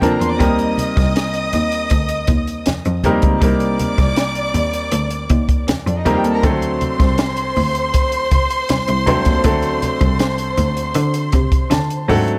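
Lush 1970s-style soul at a relaxed 80 BPM, this bittersweet, silky excerpt features a soft-attack studio violin section as a second line, singing with expressive vibrato over a clear, up-front baby grand piano and a rich, boxy bowed cello carrying the bass from 0.2 seconds. A compact, dry cocktail drum kit with a punchy kick and high-tuned snare keeps time up front, while thick-skinned, low-tuned congas sit in the background, all set in studio reverb as the harmony moves from Eb6 through Cm7 to D7. The piano closes with a fill from 11.3 seconds.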